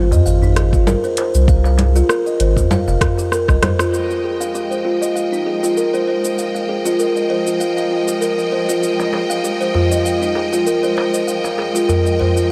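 Light reverb and a small room ambience frame this mystical, hypnotic slice of organic downtempo, cut from a longer piece and set in a gently swung 4/4. Up front, a buzzing kalimba plays woody, hollow-boxed arpeggios throughout, passed through a low-pass filter, tape echo and shimmer reverb. For the opening stretch, a round sine sub bass with sidechain pumping sits beneath a deep, layered electronic kick. Meanwhile, a deep house kit of cabasa, congas, metallic hi-hat and rim click runs the whole way, joined by a clay-shelled darbuka played with soft hands. After a drum fill, and amid a band accent, the chord moves from Fm7 to Fm9 at 3.9 s, and a distant, biting string section enters with lush bowed sustained chords, vibrato, shimmer reverb and sidechain pumping. The darbuka drops away during the string passage and returns at 9.0 s.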